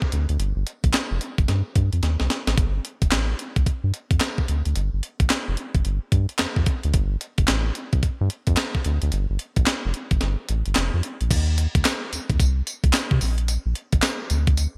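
A clean 12-bit drum machine opens this punchy, bouncy new jack swing excerpt at 110 BPM, its thumpy kick, medium-tuned snare, handclaps, hi-hat, tambourine and crash swung on the sixteenths and wrapped in gated reverb, while a round, deep analog bass blending sawtooth and sine tones sits up front between F1 and C3, with a drum fill at 2.0 seconds and the kick dropping out from 10.2 to 11.3 seconds before a new section arrives, framed by a bright, dry 1980s-style digital production.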